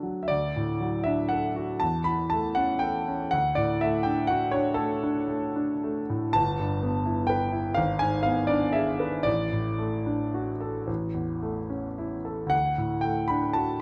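Serene and tender, this brief romantic nocturne for solo piano drifts in D major at a slow 36-44 BPM in a rubato 12/8, its clear, worn concert grand sitting up front with deep bass reaching down to G1 as chords move from D through Em/G and a G#dim before settling back on D at 12.5 seconds, all bathed in a moderate recital-hall reverb captured by close, detailed microphones.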